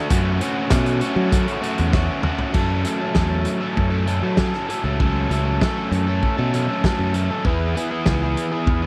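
Cool and moody, this short indie rock excerpt in a straight 4/4 sets a crunchy, double-tracked overdriven guitar riff up front over a growly, punchy picked electric bass and a loose acoustic drum kit with a fat snare and a rolled-off top. A drum fill from 1.9 to 2.6 seconds leads into the next section, where the harmony holds on F# minor before shifting to E at 7.5 seconds. The sound is dry and close, like a 1970s studio session in a small room.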